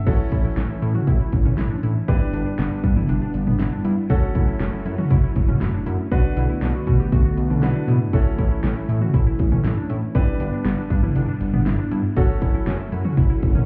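A straight 4/4 pulse drives this bright, upbeat synth-pop excerpt, with a punchy, up-front pop drum kit and a fat, detuned sawtooth analog bass carrying the groove through a cycling A, G, F#m, Bm7 progression. A clear concert grand piano plays accompaniment, while mellow string-machine violas with ensemble chorus sit in the background and a round, warbling analog pluck spins arpeggios through chorus and delay. The whole mix sounds muffled, as if heard through a wall, with club reverb.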